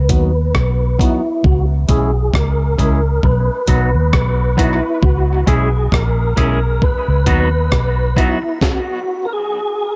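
Meditative and hypnotic, this dub reggae excerpt swings over an alternation of B and C#m chords: a dark, round, foam-muted bass and a gritty, compressed breakbeat-style kit with thumpy kick, high-tuned snare, rim click and hi-hat sit up front; a bright, twangy picked guitar runs through a low-pass filter and tape echo; and a mellow tonewheel organ melody with key click, chorus vibrato, fast rotary speaker, low-pass filter and tape echo carries on alone from 8.9 s to 10.0 s, all within a dry mix under a filter sweep that spans the whole passage.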